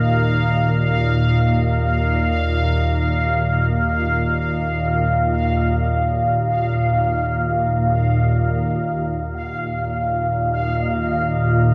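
Dark ambient drone excerpt, ominous and desolate, where a calm, detuned organ-like drone sits up front with ensemble chorus beside a bubbling, resonant sawtooth texture of random filter steps, while a moody, mellow analog pad with chorus and phaser lingers in the background and fades out by 8.6 seconds, the whole set in a wet echo chamber and captured on cassette tape.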